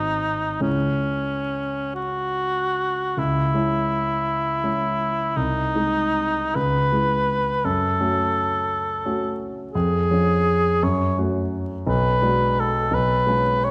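Flowing in a rubato 6/8 with the dotted quarter at 44 to 58 BPM, this solemn, melancholic romantic classical fragment in C# minor, cut from a longer piece, unfolds as an intimate duo for cor anglais and grand piano. The cor anglais carries the melody throughout, its mellow tone shaped by vibrato and a soft attack as it sings between C#4 and C#5, solo and up front in a classical style. Beneath it the concert grand accompanies from G#1 to G#4, sounding warm and polished with deep bass and a short sustain, placed up front alongside the horn. The harmony opens on a G#7b9 that settles into C#m, and after a brief opening passage a new section begins at 3.2 seconds, moving through G#/B#, F#m and C#/E# before the tension of G#m7b5/B and a closing C#7/B at 12.9 seconds. A wet recital hall reverb and a vinyl crackle lend the recording an aged, reflective atmosphere.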